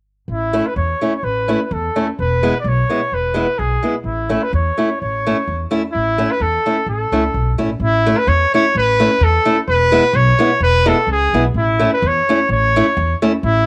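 A clear, classical-style trumpet carries the melody from 0.3 s, with a dark, woody pizzicato upright bass beneath it. A bright, boxy parlour steel-string guitar, fingerpicked with audible finger squeak and coloured by cassette tape, joins at 0.5 s. Together they play a jolly, festive alpine folk dance in 2/4 at 128 BPM in A major, moving between A and E on a lightly reverberant home cassette recording, with plate reverb lending the trumpet a distant, roomy sheen in this fragment cut from a longer piece.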